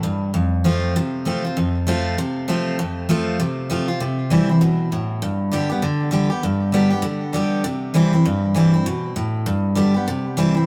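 A bright, full-bodied jumbo steel-string acoustic guitar plays alone and up front in this short, upbeat rock fragment with a retro, swung feel, its picked lines carrying a touch of tape echo. The chords move from F to C and G and settle back on C at 10.1 seconds. The rough rehearsal-room sound has tube saturation and moderate studio reverb.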